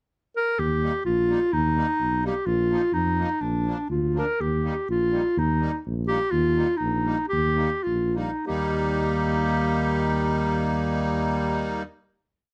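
A dark, warm production with light reverb frames this short, festive alpine folk piece for dance band in 2/4 and Eb major, where a classical-style clarinet carries jolly, motif-based song phrases up front from 0.4 seconds, a dark, close-miked tuba with vibrato plays root-and-fifth bass on the main beats, and a reedy, sweet accordion with light tremolo tuning and a boxy small-room sound adds off-beat triad chords, the rubato feel moving between 90 and 128 BPM and slowing from 6.3 seconds before a final chord at 8.5 seconds.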